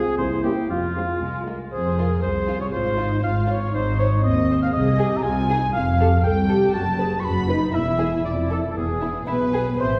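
A playful, whimsical cinematic film cue with a magical, quirky air, in which veiled, con sordino violin sections carry the melody and a second line over lush muted violas, dark cellos and double basses, while a warm oboe sings its own line throughout, a hollow flute, bell-like celesta and mellow French horn chords colour the opening until about 1.5 seconds, and a distant clarinet slips in at 9.3 seconds, the ensemble heard from further back in a reverberant scoring stage.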